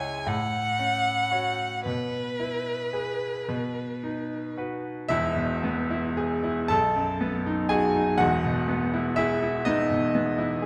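In a rubato 6/8, this solemn, elegiac romantic classical duo pairs a single bowed violin, rich and focused with vibrato, singing the melody up front until 4.5 s, with a bright, polished grand piano whose long-sustained accompaniment carries on alone into the second section at 5.1 s and through to 10.7 s, the pair set in the wet reverb of a scoring stage in this fragment cut from a longer piece.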